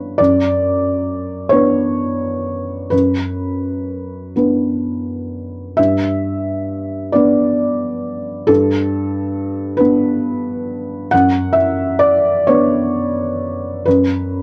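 A felt-muted upright piano plays alone from 0.0 to 14.4 seconds, its soft, mellow tone sitting up front with audible action noise that makes the performance feel close and intimate. This short cut from a longer neoclassical minimalist piano piece moves slowly in 6/8 at around 42-46 BPM, counted in dotted quarters, with a rubato feel that lets the time breathe. The piano spans F#2 to F#5 and is tuned to A4 = 438 Hz. Its harmony moves from Bm over F# to G at 5.8 seconds, where the opening idea begins again, before returning to Bm over F#. The mood is wistful and intimate, and the dry, close 1970s-style studio sound carries only a light touch of reverb.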